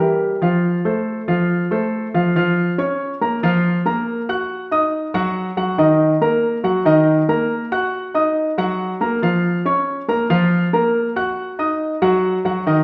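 Latin piano piece in Bb minor at 140 BPM in a straight 4/4, danceable and warm, with a solo grand piano, polished and up front, spanning Eb3 to Gb6 as it moves from a rootless diminished chord and F into a section that rocks between Bb minor and Eb minor from 2.4 seconds, all bathed in the wet reverb of a large studio room in this fragment cut from a longer performance.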